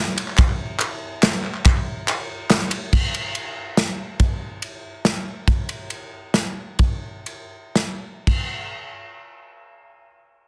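A straight 3/4 folk groove at 112-142 BPM carries this anthemic, warm fragment, where an airy, polished acoustic drum kit sits up front with a punchy kick, medium-tuned snare, ride and crash, joined at first by crisp, band-limited, vintage group handclaps that drop out at 2.8 s, before the tempo slows from 5.5 s and the drums stop at 8.4 s, all in light reverb with a dense, heavily limited modern master.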